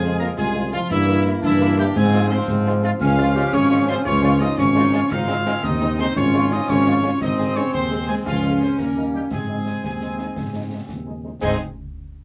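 This military-style march for wind band moves in a straight 6/8 at 114 BPM, counted in dotted quarters, and this spirited, rousing excerpt in Ab major is cut from a longer piece. A warm trumpet section carries the melody, sounding distant and roomy with light vibrato and tight ensemble playing. Alongside it, a dark, close-miked euphonium, a pure piccolo with tongued notes and rolled-off highs, and a soft-edged woodwind section trace second lines. A French horn section fills in the accompaniment while a smooth-topped trombone section holds sustained chords, and an up-front tuba anchors the bass. Concert snare, bass drum and clash cymbals with dark cymbals join at 0.2 seconds, close and dry in the background, as the harmony moves from Fm through Db to a closing cadence of Db, Eb and Ab, all set in light reverb.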